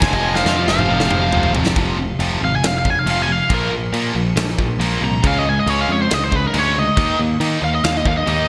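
A straight 4/4 pulse at 138 BPM drives this menacing hard rock passage in F minor, cut from a longer piece, with a big rock drum kit up front whose punchy kick, medium-tuned snare, bright cymbals and toms ring through gated reverb, opening with a drum fill over the first 1.8 seconds. Beneath it, a growly, punchy picked electric bass holds the low end from F1 to Eb3, while a tight distorted guitar and an overdriven electric guitar pick out the riff in the background. A second distorted guitar, double-tracked, compressed and very quiet, adds to the riff only until 1.8 seconds, and a nasal lead guitar with a parked wah plays a short second line in that same opening stretch. At 1.8 seconds the biting, overdriven lead guitar, already present and up front with digital delay, takes a solo ranging from Bb4 to Bb5 as the chords move through F5, Bb5, Db5 and Eb5. The bright 1980s-style digital production sits in a moderate plate reverb, with a faint mains hum underneath.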